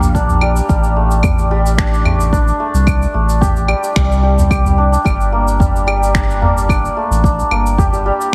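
A shimmering, ringing santur plays up-front arpeggios through digital delay in this meditative organic downtempo excerpt in G minor at 110 BPM, moving from Gm to Am7 at 0.7 seconds and back to Gm at 5.1 seconds. A round, deep sine sub bass sits up front beneath it, while a deep electronic kick in the background, layered tape-warm electronic cabasa, claves and finger snaps, and a very quiet, saturated small udu fill out the rhythm. Light reverb and digital ambience surround a heavily compressed, radio-like sound.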